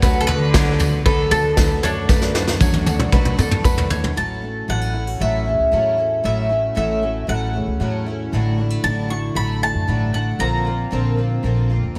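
Indie folk at 115 BPM in D major, anthemic and hopeful, this excerpt opens with a shimmering, octave-doubled twelve-string acoustic guitar bathed in lush chorus, a woody, growly pizzicato upright bass, light fingerpicked ukulele arpeggios, a jingly tambourine tucked in the background and an up-front brush drum kit with a punchy kick that plays a fill from 2.1 s. A round, double-strung mandolin carries the melody from 0.2 s with slapback echo and digital delay, while an intimate bowed cello adds a soft, airy sul tasto second line until 3.6 s. At 4.2 s the drums and ukulele stop and a full-bodied fingerpicked jumbo steel-string guitar joins in the background, as the chords move through A6 and Dadd9/A to a Bbadd9 under light reverb.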